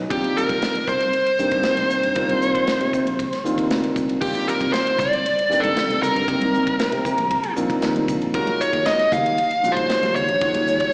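A straight 4/4 groove at 116 BPM drives this nocturnal electric jazz fusion excerpt, with a punchy kick, medium-tuned snare, hi-hat, ride and crash from a rolled-off studio kit, plus ringing hard-hand congas joining in the background at 4.3 s. A growly fretless bass and a mellow, boxy grand piano with audible action noise, long sustain and slapback echo hold a Cm11 harmony that shifts to Ebm11 at 8.3 s, while an up-front, dark overdriven lead guitar carries the picked melody through tape echo. The whole performance sounds like a live gig heard through the venue's PA in moderate club reverb, with a small-speaker character.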